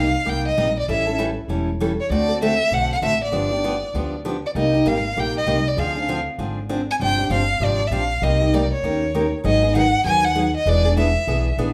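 Virtuosic yet bittersweet, this short cut from a longer piece is acoustic string swing in the jazz manouche style, moving at a brisk 196 BPM in C minor with a swung eighth-note feel. A single bowed violin carries the melody up front, its rich tone shaped by vibrato, a soft attack and expressive portamento. A picked steel-string acoustic guitar provides accompaniment, also up front, sounding bright and concert-like, with finger squeak audible on the strings. Underneath, a pizzicato upright bass with steel strings gives a woody foundation. All three play together throughout, in a moderate large-studio reverb that captures a band playing live in one room. The harmony cycles through minor-key changes such as Cm7, Dm7b5 and G7sus4 before shifting to a new section at 9.4 seconds, where G#m7 and E7 take over.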